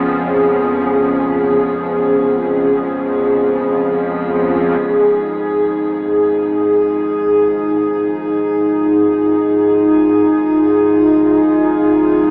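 A cavernous cathedral reverb and a thin, AM-radio tone frame this unsettling, ominous dark ambient drone in F minor, cut from a longer piece and moving in free time from an A-flat minor chord to F minor at 4.8 seconds. Up front, a deep, moody analog pad of detuned sawtooth, square and triangle waves with a sub octave and wave-folding holds sustained chords through chorus and shimmer reverb, while a quieter, tense, string-like drone, bright with vibrato and a noise layer, sustains low beneath it, and a synth drone fades in from 4.8 seconds. From that point a barely audible bronze singing bowl, struck with a felt mallet, adds a soft, metallic ring with slow beating.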